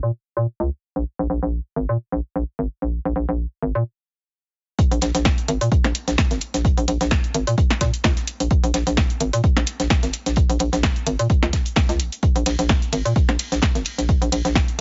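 A hollow, bouncy FM bass with a fast attack, tube saturation and sidechain pumping opens this cool, quirky minimal techno piece in Bb minor at 129 BPM with swung 16ths, playing alone under a filter sweep before a brief stop at 3.9 seconds, and then the drop at 4.8 seconds brings in an up-front, tape-warm analog kick, a punchy analog drum machine on snare, hi-hat and ride, and a very quiet, dry 70s acoustic kit with a fat snare and rolled-off top, all set in a small room.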